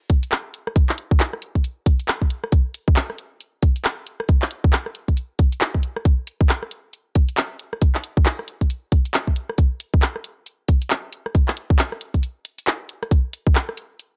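A tight, layered electronic kick drum sits up front, driving this short, bouncy UK garage clip at 136 BPM in 4/4 with a skippy 60% swing on the sixteenths. A garage drum kit of handclaps, hi-hat and rim click rides alongside it, also produced and close in the mix, with a tape-warm character shared by both parts. The two drum parts start together at 0.1 seconds and carry the single section almost to the end. A break arrives at 12.2 seconds, after which the kick stops at 13.5 seconds while the kit carries on briefly. The sound is dry and gritty, with little room around the drums, giving the groove a hardware feel.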